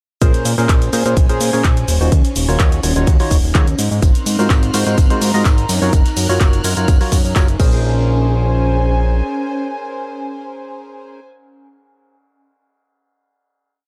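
Energetic and soulful, this short piano house piece opens straight into a drop, driven by an up-front four-on-the-floor electronic kick, a punchy analog drum machine supplying cabasa, hi-hat, handclaps and crash, and a very quiet soft brush kit adding ride cymbal and snare underneath. A fat, octave-jumping analog bass with sidechain pumping sits beneath a hollow, percussive organ stab riff coloured by chorus and analog delay, while an airy, breathy pad drifts through slowly shifting chords such as Bbm9 and Ab13. At 4.0 s a dark chamber string section with light vibrato joins alongside a tambourine, the drums drop away around 7.7 s, and the organ, pad and strings carry the final note, all heard through a dry, gritty hardware sound with transformer saturation.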